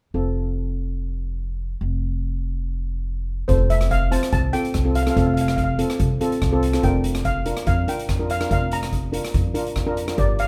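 Calypso at 143 BPM in F major with a slight swing, sunny and festive, cut from a longer piece. Mellow cello pans struck with soft rubber sticks and a woody pizzicato upright bass open together up front, before a shimmering lead pan enters with the melody at 3.5 seconds alongside a polished, airy street-band kit of hi-hat, boomy kick and rim click. The harmony shifts from F to Bb over F at 6.8 seconds, within a light reverb.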